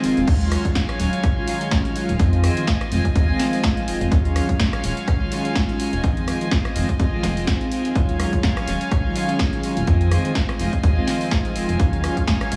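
This filtered disco house excerpt opens with mellow, detuned synth brass, a rich chamber string section, a clean direct-recorded electric guitar riff, a plucky analog bass and a house drum kit all sounding together. At 0.3 seconds a punchy, up-front electronic kick drum arrives with the drop and holds through to 12.4 seconds. The tempo sits at 125 BPM in 4/4 with a light swing on the sixteenths, and the harmony moves between Ebm11 and Fm7 in Eb dorian, giving a nostalgic, groovy mood. The brass is round and dark, with chorus, phaser and a filter sweep. The strings are bowed with a soft, floating attack, and the guitar stays compressed in the background. Sidechain pumping shapes the brass, strings, guitar, bass, hats and cymbals. The funky, ring-modulated bass pluck drives the low end, while the kit's punchy snare, high-passed tape-toned hats, rim click and crash sit in a small room reverb.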